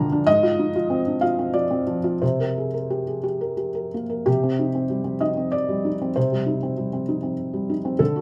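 Wistful and melancholic, this short excerpt of neoclassical minimalist piano moves in a rubato 3/4 at roughly 86-99 BPM in C minor. A lone felt-muted upright piano carries everything, its soft, mellow tone sitting up front and intimate, with audible action noise, short sustain and a light reverb around it. The harmony passes through Fm/Ab and C5 before settling on C minor at 4.3 seconds, where a second section begins.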